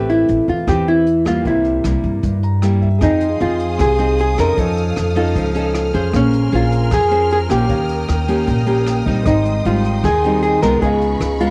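A home cassette recording with light reverb carries this smooth, melancholic bossa nova excerpt, where a dark, clean hollow-body jazz guitar leads the melody up front over fingerpicked nylon-string guitar, a clear grand piano in the background that adds fills at 2.2 and 8.5 seconds, woody, thumpy pizzicato upright bass, and a brushed drum kit with boomy kick, rim click and hi-hat, while a lush bowed string section joins with sustained chords at 3.0 seconds.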